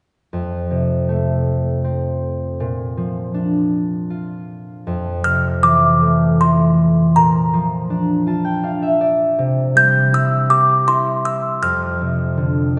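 A concert harp opens this sleepy, tender lullaby at 0.3 seconds, thumb-plucked with a bright, ringing acoustic tone placed up front as it lays down the accompaniment in F major. The tempo is a gentle 80 BPM in 3/4 with a straight feel, and the tuning sits slightly high at A4 = 441 Hz. At 5.2 seconds a large music box takes the melody high in its register, its delicate, tinkling plucked notes close-miked, dry and full so they sit intimately near the listener. The harmony drifts calmly through F, Bb, Fmaj7 and C before settling back on F, and the harp adds short fills from 7.9 seconds and again near the close. A lush church reverb surrounds the recording with a long, hall-like tail, while the top end is softly rounded off. The passage is cut from a longer piece and feels made for drifting off to sleep.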